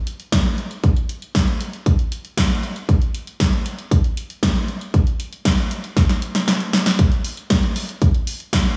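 Lightly reverberant studio sound frames this bittersweet, nostalgic italo disco drum passage at 117 BPM in straight 4/4, where an up-front, layered electronic kick pairs with a house kit whose punchy snare and hi-hat carry gated reverb, leading to a drum fill from 6.0 seconds as the kick drops out between 6.5 and 7.0 seconds before a new section begins.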